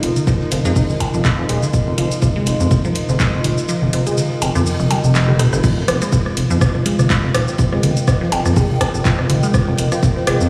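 A lush hall reverb and the ring of a stone room give this short cut from a minimal techno track a hypnotic, clinical air, as if it were played through a big sound system in a bare space. At 123 BPM in 4/4 with a light swing on the sixteenths, a punchy, up-front electronic kick anchors the groove beside a rubbery, hollow square bass that bounces under sidechain pumping. An analog drum machine supplies cabasa, crash, handclaps, hi-hat and rim click, while a minimal click kit adds blips, rim clicks and toms through tape echo, and a dry, dark soul drum kit sits in the background with high-passed hats, ride and a fat snare. A juicy, squelchy blip pluck carries the riff through chorus, phaser and tape echo, sitting beneath a warbling, nostalgic lo-fi pad and a very quiet, swarming drone. A dark trumpet with a bucket mute flickers in briefly at 0.7 seconds, and the kick drops out at 3.7 seconds before a drum fill leads into the drop at 5.6 seconds, where the drone falls away.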